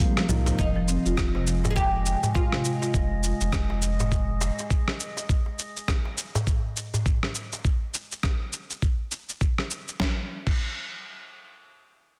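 Organic downtempo at 102 BPM in 4/4, with a swung sixteenth feel and an earthy, warm mood, this short excerpt is cut from a longer piece. A bright, plectrum-plucked fretless oud carries the melody for the first 2.9 seconds, its double strings ringing through a digital delay. Alongside it, a felt-muted upright piano offers a brief, intimate accompaniment with audible action noise, while a woody marimba played with soft mallets spins arpeggios through a filter sweep between 0.6 and 2.9 seconds. A glassy, drifting harmonics texture floats over the harmony as it moves from Ab to Fm7, and a round, deep analog bass pumps beneath it. The groove runs throughout on a gritty, tape-tinged sampler-style kit with congas, shaker, rim click and a clipped snare, driven by an up-front, thumpy electronic kick, and a clay-shelled darbuka played with hard hands joins until 7.6 seconds. The mix sits in a lush hall reverb with a small room feel, finished with a dense, heavily limited modern master.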